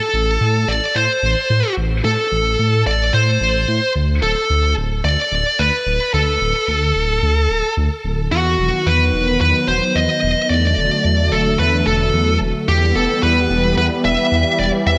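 Synthwave at 110 BPM in a cinematic, moody vein, cut from a longer piece: a distorted, high-gain lead guitar carries the melody up front with digital delay, over a deep, rumbling detuned saw bass with a beating unison tone, while a mellow analog pad softened by chorus enters with smooth sustained chords at 8.3 s, all set in a moderate plate reverb with bright 1980s-style digital production.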